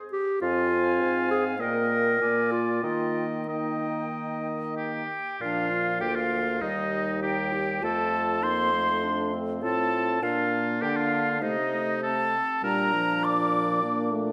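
At 100 BPM in 4/4, played with a supple rubato, this spirited, lively excerpt from a classical-period wind quintet movement sets out in Eb major and turns to Bb major at 5.4 s. The airy silver concert flute carries the melody with vibrato and a soft attack, the up-front oboe sings a clear second line, and the close-miked clarinet, starting first at 0.1 s, shares the accompaniment with a smooth-topped French horn. Beneath them a mellow, breathy bassoon holds the bass with light vibrato, all set in a moderate scoring-stage reverb.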